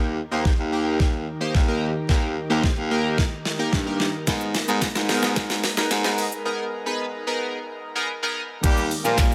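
Upbeat and euphoric, this dance-pop clip at 110 BPM in Eb major builds for 8.6 seconds as glossy, phased retro synth keys and a breathy pad pump over a bright, vibrato-tinged baritone saxophone bass line, with a knocking electronic R&B kit entering at 0.5 seconds, a barely audible jingly tambourine joining at 4.3 seconds, a break from 6.5 seconds, and a clear, octave-doubled horn section arriving at 8.6 seconds as the chords move from Eb to Abmadd9 and back, all set in light digital reverb.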